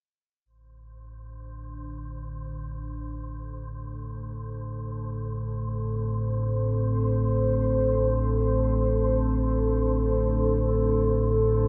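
A deep, rumbling drone opens this dark ambient excerpt at 1.0 seconds, its wave-folded tone sitting up front and low, around A1 to A2, with an ominous weight. At the same moment a wind-like noise texture fades in far beneath it, a breathy, airy layer tuned to a single high pitch. At 1.5 seconds a moody pad joins with sustained chords in A minor, its detuned unison layers thickened by chorus and a sub octave, giving a slightly ringing, ring-modulated edge. The music moves in free time, with slow attacks and long releases that let each sound bleed into the next. A huge reverb with a long tail surrounds the parts, deepening the desolate, shadowy mood until the cut at 11.7 seconds.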